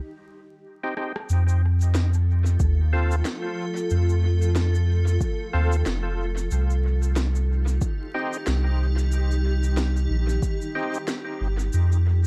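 Spacious and meditative, this ambient dub cut from a longer piece moves at 92 BPM in 4/4 with a swung sixteenth-note feel, shifting between C minor and F. A gritty, overdriven tonewheel organ opens with percussive stabs at 0.8 seconds, its chorus vibrato and dub echo adding thickness. A brief drum fill of electronic rim click, cabasa and woody snare leads in, with tape-toned grain and their own dub echo, before a round, soft sub bass arrives at 1.3 seconds and sits up front. From 2.6 seconds a cloudy, evolving granular pad blooms with slow-attack sustained chords, bright and blurred in its own reverb, while a deep, layered electronic kick with overdrive punches in close. The production is dark and dry overall, dusted with vinyl crackle.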